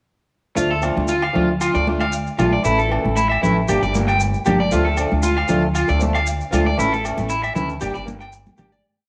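A woody, thumpy upright bass plays a syncopated pizzicato figure at 116 BPM in straight 4/4, over grainy maracas, a ringing low agogo time line in the background and a loose pattern from distant, bright, high-tuned congas played with soft hands. This danceable, warm highlife guitar band piece in D harmonic minor moves through Dm, A and Gm. Up front, a twangy, slightly broken-up electric guitar picks a pedal-note arpeggio in sixteenths with subtle chorus and tape echo, beside a boxy, fingerpicked swing-style acoustic guitar strumming upper chord shapes, all in a moderate echo-chamber reverb with small-room ambience before the fade-out from 6.8 to 8.8 seconds.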